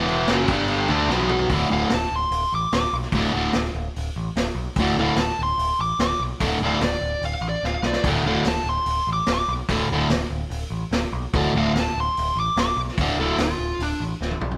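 Rowdy and raw, this garage rock excerpt charges along at 146 BPM in a straight 4/4, cut from a longer piece and played live in one room with a wet stone reverb. A bright, double-tracked fuzz guitar riff sits up front over a growling, overdriven picked bass and a vintage drum kit with dark cymbals, a tight kick and a rolled-off top, while a dark fuzz lead guitar takes the melody from 1.7 seconds. Drum fills land at 1.1, 7.6 and 14.2 seconds, marking the opening push and carrying the band through to the cut.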